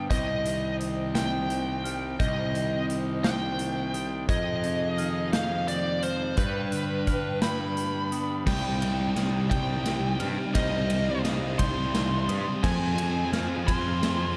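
Melancholic and cathartic, this slow post-rock passage in a rolling 6/8 is cut from a longer piece and moves from a brooding opening into a build-up. An up-front, biting lead guitar carries the melody with overdrive and a diffuse ambient delay, while a growly, fuzzed electric bass sits forward beneath it and a big acoustic rock kit with a punchy kick and bright cymbals drives the pulse. Underneath, a very quiet clean electric guitar plays arpeggios, a rich chamber string section holds sustained bowed chords with vibrato, and a mellow glockenspiel struck with rubber mallets adds bell-like arpeggios through its own diffuse ambient delay. The harmony opens on Cmadd9 and passes through Fm7 and G before returning to C minor and moving on to F minor. At 8.5 seconds a thick, distorted fuzz guitar enters in the background with a riff as the drums play a fill through the build-up to the end. A light studio reverb ties the whole together.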